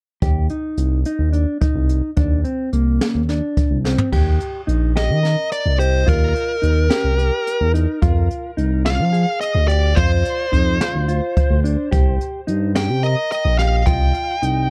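A driving 7/8 pulse at 216 BPM in eighths, played straight, anchors this intricate progressive instrumental in Eb major, cut from a longer piece. A jazz brush drum kit sets the groove with dark cymbals, a high-tuned snare and a boomy kick in a small acoustic room, and a drum fill at 3.8 seconds leads into the next section. Underneath, a smooth gliding synth bass with a sawtooth and square-wave tone sits up front, its sustained notes sliding between pitches with portamento. A mellow, clean electric guitar plays fingered arpeggios from the start, while the harmony moves from Eb5 to Eb, then Fm and Cm. At 5.0 seconds an overdriven, picked lead guitar enters with the melody, up front and trailed by analog delay. The dark production keeps reverb to a minimum, so the parts sound dry.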